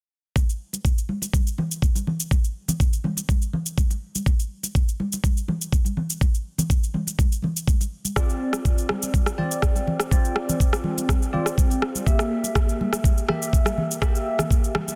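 A knocking, up-front electronic kick, a produced shaker and rim click, and close, high-tuned congas with a thick, damped skin played by soft hands open this driving afro house excerpt at 123 BPM in D minor from 0.4 seconds, before a bright, clean, bell-like tine electric piano enters with phased, delayed, sidechain-pumped stabs on Dm7 at 8.2 seconds and Edim at 12.1 seconds, all within a warm digital ambience and a dense, heavily limited modern master.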